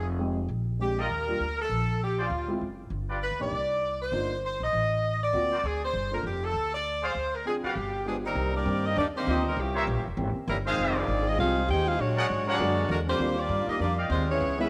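A swung 4/4 pulse carries this sultry big band swing passage, cut from a longer piece, with an upright bass playing woody, thumpy pizzicato lines on gut strings up front from the first beat. A bright saxophone section leads the melody, close-miked and up front, with vibrato and a soft attack. A grand piano adds warm accompaniment underneath, while a distant, roomy trumpet section punctuates with stabs from 1.0 s. A trombone section joins at 7.7 s with a tight second line, its tone warm and edged with vibrato. The harmony shifts to a new key centre at 8.4 s, moving through rich altered and extended chords, and the whole band sits in a moderate echo-chamber reverb with small-room ambience.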